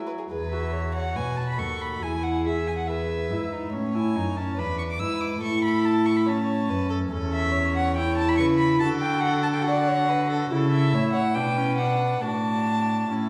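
The first violin, viola and cello begin together, with the second violin joining at 0.1 seconds in this spirited, cheerful classical-period movement for string quartet, cut from a longer piece and moving briskly at 141 BPM in a straight 4/4. All four players use gut strings in period style, giving the ensemble a reedy edge. Up front, the lead violin carries the melody high in its range with a rich tone and light vibrato, while the second violin adds a close, nasal second line with an airy bow. The viola supplies a warm, distant accompaniment, and the cello anchors the bass with a nasal, forward presence. The music opens in E major and shifts to D major at 7.1 seconds. The quartet sits in a wet recital hall, heard from further back in the room.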